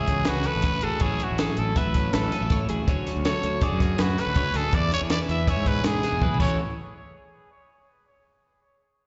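A raspy, growling trumpet with slapback echo and analog delay leads this bright, intricate math rock and midwest emo excerpt in A major at 162 BPM in 5/4, over a clean, compressed twelve-string electric guitar accompaniment, a twangy twelve-string guitar picking arpeggios in the background, a fuzzy, overdriven fingered bass and a dark, compact cocktail drum kit with a high-tuned snare and a punchy kick that rounds off the A6, Dmaj7 and E7 changes with a fill at 6.2 seconds, all heard as a live gig through the venue's PA in a recital hall's reverb with a muffled top end.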